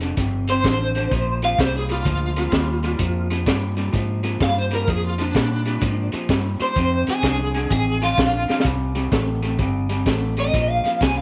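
An overdriven semi-hollow guitar carries the melody from 0.5 s, its hollow-body, picked tone colored by tremolo and sitting up front in this laid-back, gritty electric blues shuffle. Beneath it, a slightly broken-up, lo-fi guitar through a small old amp plays a riff, while a round, foam-muted fingered bass and a saturated breakbeat kit with a high-tuned snare, tight kick and rolled-off top drive the swung groove, the drums taking a fill at 8.4 s. The harmony moves from F to Bb7 and back in a small room with light reverb, and the piece is cut from a longer recording.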